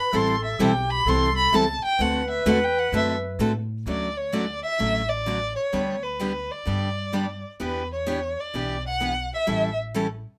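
A dark, bowed violin opens this lively, charming stretch of acoustic string swing, taking a solo from the start with expressive vibrato and portamento. A breathy clarinet with a soft, whispered subtone carries a second line beneath it, sounding distant and intimate before it drops out at 3.6 seconds. From the first beat, a bright, picked steel-string acoustic guitar sits up front with the accompaniment, and a woody, thumpy upright bass on gut strings plays pizzicato underneath. The tune moves at 128 BPM in 4/4 with a swung eighth-note feel, and the harmony settles into D major at 3.9 seconds. From there the chords pass from Dmaj7 through G/D and Em7 to A7, with the violin's smooth top leading over light reverb in this section cut from a longer piece.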